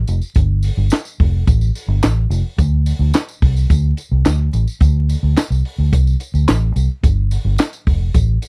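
A dry, close recording in the 1970s studio style, with vinyl crackle over it, carries this short funky, strutting snippet at 108 BPM in a straight 4/4. A dark, round, foam-muted fingered electric bass sits up front, playing between F1 and D2 from the first instant, while a compact cocktail drum kit joins at 0.1 seconds with a punchy kick, a high-tuned snare, hi-hat and handclaps, all smooth with a rolled-off top. A jingly tambourine adds a faint small-room shimmer in the background.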